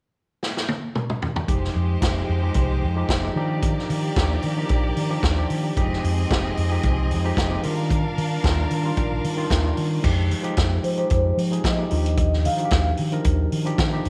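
A drum fill on a vintage kit opens this driving, sultry disco excerpt at 112 BPM in F dorian, the acoustic drums sitting up front with a punchy kick, medium-tuned snare, dark cymbals and a rolled-off top across crash, hi-hat, snare, kick and toms. At 1.5 seconds the groove settles in as a round, amped fingered electric bass and a worn, slightly out-of-tune tine electric piano heard through its built-in speakers join over a steady alternation of Fm9 and Ebmaj9. A bright studio violin section plays a lush, intense second line with vibrato from 1.5 to 10.0 seconds, placed distant in the mix. Near the close a vibraphone with soft mallets carries a short, mellow melody with fast motor vibrato and a smooth, metallic ring. The whole is set in a moderate echo chamber reverb with a small room ambience, and the recording is cut from a longer piece.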